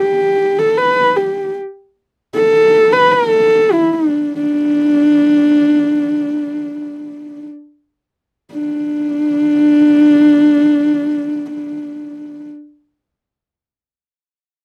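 A lone horsehead fiddle opens this short cut from a longer piece of traditional Mongolian folk music, its husky horsehair strings bowed by one player in free time. The mood is galloping yet vast, and the melody stays within the range of D4 to B4 in a D zhi mode, tuned to A4 = 443 Hz. Light vibrato, soft attacks and gliding portamento shape each phrase, while the airy bow adds breath to the tone. The pace slows from 1.6 to 8.5 seconds through the opening section, and a second section follows from 8.5 seconds to the close. The sound is dry and intimate, a close 1970s-style studio recording that places the fiddle up front.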